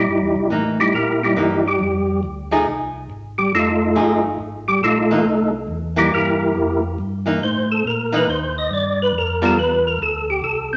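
A percussive tonewheel organ carries the melody up front, its key click and third-harmonic percussion shaded by chorus vibrato and a fast rotary speaker, in this bluesy, swinging soul jazz organ trio fragment at 139 BPM in C mixolydian. Beneath it a second, round and dark tonewheel organ holds down the bass through a stopped rotary speaker, while a picked, hollow-bodied archtop guitar adds clean, up-front accompaniment from 0.5 to 9.6 seconds. The chords move through C7#9, F7#9 and G7#9, and a large studio reverb gives the trio a spacious, wet room sound.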